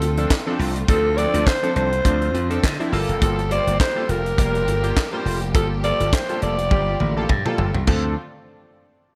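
Swung sixteenths drive this late-night, danceable early-eighties boogie funk fragment: a tight, up-front drum kit with handclaps, toms and gated reverb sits under a bright, punchy slap bass, a breathy, raspy alto saxophone carries the melody until 7.3 seconds, a glossy chorused polysynth adds accompaniment from 0.2 seconds, a dark, clean electric guitar riff and a smooth bowed string section with vibrato stay in the background, and a drum fill at 6.7 seconds leads into the final bars as the harmony moves from Dm7 to Gm9 and back.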